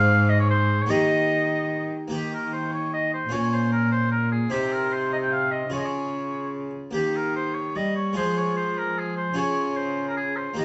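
Stately and courtly, this excerpt of a renaissance-style consort dance moves in a straight 3/4 at 149 BPM in Eb mixolydian, with a clear oboe carrying the melody in a vibrato-tinged voice with a soft attack. Beneath it, a full, plucked harpsichord with two sets of strings supplies the accompaniment, while a single bowed cello with a rich gut-string tone and airy bow anchors the bass. All three play throughout, shifting into a new section at 2.1 seconds, and the trio sounds heard from further back in a wet stone room with a dulled top end.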